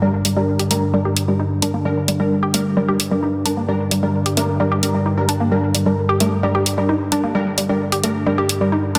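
Intense and dark, this driving peak-time techno cut runs at 131 BPM in a straight 4/4, sitting on G minor throughout. A woody, wave-folded pluck carries the riff from the start, its percussive, fast-attack notes thickened with chorus, tube saturation and dub echo and moved by a filter sweep. Alongside it, an aggressive rave stab built from detuned unison sawtooths fires off thick stabs with a moving notch, chorus, its own reverb and dub echo. Beneath them sits an evolving, warbling analog drone with slow attack and long release, held up front with chorus. An overdriven, layered electronic hi-hat enters at 0.2 seconds and sits up front in the mix. The whole is bathed in a lush hall reverb and pressed into a dense, heavily limited modern master, and the passage is cut from a longer piece.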